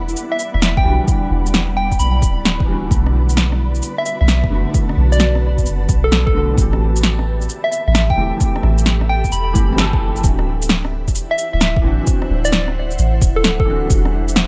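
A felt-muted upright piano, an ethereal, detuned pad, a round 808-style bass and a flickering, granular texture open this wistful, melancholic future garage excerpt together, with the piano, pad and bass pumping against the sidechain as the swung chords move from Em9 through Bm7 and Am7. Overdriven electronic drums come in, with a punchy snare, shaker and rim click up front and a deep layered kick from 0.8 s, alongside a warbling FM synth lead carrying vintage 12-bit grit and digital delay, all in a dry, bright 1980s-style digital mix. The grainy texture stops at 10.3 s, just after a band accent at 9.8 s, as the harmony shifts to D9 before returning to Em9.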